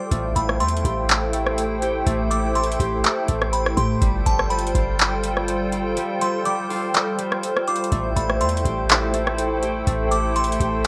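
A booming analog drum machine with a deep kick, metallic hi-hats, handclaps and rim clicks sits up front in a half-time 4/4 groove at 123 BPM, its kick dropping out from 6.0 to 7.9 seconds while a clean, sine-like 808-style bass thumps beneath. This spacious, ethereal cloud-rap excerpt in A minor moves from Am7 to G7sus4 and back as a hollow, flute-like pad warbles through ensemble chorus and sidechain pumping. Above it, a tinkling FM tine bell carries the melody with chorus and digital delay, while a ringing, fingerpicked concert harp plays delayed arpeggios and a glassy texture of drifting overtones hovers in the background of a rough, lightly reverberant home-demo mix.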